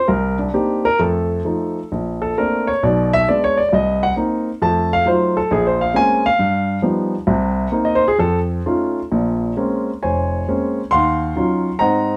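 A solo grand piano opens this brief, late-night jazz fragment, cut from a longer piece and set in B-flat minor at 134 BPM in 4/4. Its moody swing takes a rubato feel, with the eighths swung. The piano sits up front with an intimate, natural tone, and the clatter of its action is audible beneath the notes. Its range spans F1 to C6, and the harmony moves through rich extended chords such as Cm9, F7b9, Bbmaj9 and Gaug7. At 9.1 seconds the music turns to a new section built on Bbm9 and then Ebm9, carrying the piece to its close at 12.2 seconds. A moderate small-room reverb gives the sound a close, private setting.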